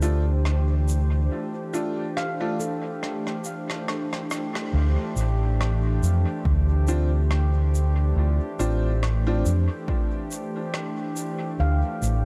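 A warbling, detuned tape-like pad holds a Dm7 chord through chorus and reverb as a ringing handpan plays arpeggios and a clear, woody upright piano adds stabs until 9.4 s, both carrying dub echo, over a dark, round fingered electric bass up front and a brushed shaker and rim click with their own echo, while a punchy electronic kick joins from 6.5 to 10.1 s in this deep, hazy ambient dub excerpt with a swung sixteenth feel.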